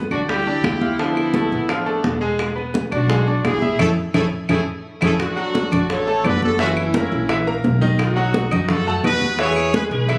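A punchy, up-front horn section with light vibrato carries the melody of this joyful, danceable salsa at 172 BPM over a bright, polished grand piano, thumpy pizzicato upright bass, ringing high-tuned congas, and soft-handed bongos and woody claves in the background, with a band accent from 3.8 to 5.2 seconds topped by a drum fill from 4.7 seconds, all heard through light club reverb as if recorded on a phone in the room.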